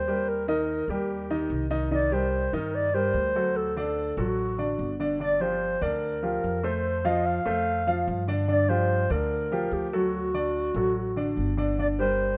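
A breathy, whispered clarinet carries the melody up front in this short, nostalgic and danceable slice of Cuban son and guajira at 146 BPM in G minor, its close-miked subtone, vibrato and scooped notes giving the line an intimate jazz flavor. Beneath it, a warm baby grand piano spells out arpeggios through a progression from Eb and Cm7 to D and Gm7, while a woody, thumpy upright bass with gut strings plays pizzicato in a low, dark register. Light reverb lends the trio a subtle sense of space, and the playing runs from the start to about 12.4 seconds.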